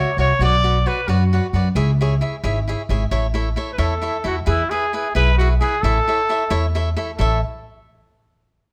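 Closely miked and detailed with a touch of light reverb, this romantic, proud stretch of mariachi-style Mexican folk moves at 88 BPM in a straight 6/8 in A major: an up-front yet distant, roomy classical-style trumpet solo carries the melody from 0.0 to 1.6 s and again from 3.7 s, a crisp, picked acoustic cavaquinho gives warm accompaniment throughout, and a woody, growly pizzicato upright bass with steel strings sits dark and prominent underneath as the chords move through C#m, A and E.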